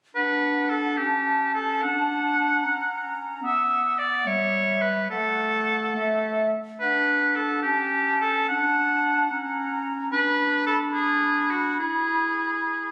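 From 0.2 s, a clarinet, an up-front solo oboe with light vibrato and a close-miked flute section with an airy tone and crisp attack enter together in this graceful, lively excerpt from a quick classical-period symphonic movement in D major and 6/8 at 72 BPM, with rubato and tuning at A4 = 437 Hz, the clear classical-style oboe and clarinet lines set in scoring-stage reverb and captured on a phone in a club-like room as the harmony moves from D through F#/C# and Bm/D to E at 11.8 s.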